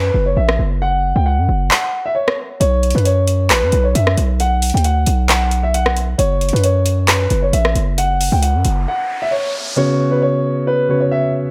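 A boxy, dark concert grand piano melody with tape echo opens this brooding, melancholic trap excerpt alongside a punchy, sine-heavy 808-style bass, before a booming analog drum machine with handclaps, metallic hi-hats and rim clicks joins at 0.5 seconds in a 134 BPM half-time feel over Bsus2 and F#5 chords; an electronic riser enters at 8.4 seconds, leading to a smooth, vintage baby grand piano accompaniment at 9.8 seconds, all under light reverb.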